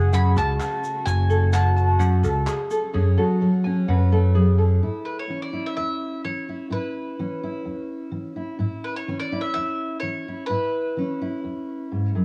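This home cassette recording has light reverb and a small-room ambience around an indie folk excerpt in A major at 127 BPM, its warm, anthemic mood carried by an arrangement that builds. A bright, double-strung bowl-back mandolin plays the melody up front. A distant, roomy trombone adds a brief classical-style second line through analog delay, while a very quiet chamber string section holds soft-attack, sul tasto chords with light vibrato. Early on, a shimmering, octave-doubled twelve-string acoustic guitar, a light fingerpicked ukulele playing arpeggios through delay, and a round, amped electric bass sit beneath the tune, with a grainy egg shaker in the background and crisp group handclaps. At 2.9 s a full-bodied fingerpicked steel-string dreadnought with fresh strings comes forward to carry the accompaniment. The harmony moves from F#madd9 to Aadd9 at 4.8 s.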